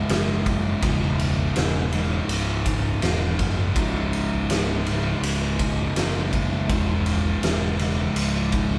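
Two thick fuzz guitars, one dark and one warm, open a sludgy, ominous stoner and doom metal riff on a single minor chord from the back of the mix, joined almost at once by a growly, overdriven fingered bass and an oversized low-tuned drum kit up front, its punchy kick, fat snare and dark ride cymbal sounding gritty in a bright stone room, as the band plays live with light reverb in this short excerpt cut from a longer piece.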